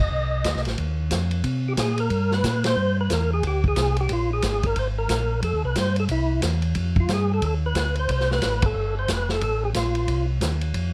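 Bluesy and soulful, this brief soul jazz organ trio excerpt swings, pairing a fat, lightly overdriven percussive tonewheel organ melody, with its key click, chorus vibrato and slow rotary speaker, against a round, dark, clean organ bass line and an acoustic vintage drum kit of punchy kick, medium-tuned snare, hi-hat and dark ride cymbal, all up front in a light reverb, with band accents at 2.6 and 8.6 seconds.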